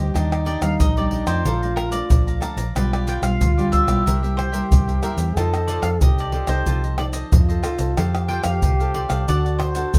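A straight samba and choro groove drives this festive, sunny passage cut from a longer piece, with a tight surdo, pandeiro, tamborim and maracas entering at 0.2 seconds, played close and dry with hard hands and placed up front. Beneath it, a vintage muted fingered electric bass gives a dark, round, foam-muted tone that sounds amped and sits forward in the mix. From 0.5 seconds a picked mandolin carries the melody, its double strings sounding woody, while a crisp cavaquinho and a thumb-plucked classical nylon-string guitar, set in the background, fill out the accompaniment. A close-miked, mellow trombone adds a punchy second line in a jazz style, colored by light vibrato. The harmony moves from Ebmaj7 through Bbmaj7, G7/B, C7 and F7 before arriving on F and then D, framed by a moderate studio reverb.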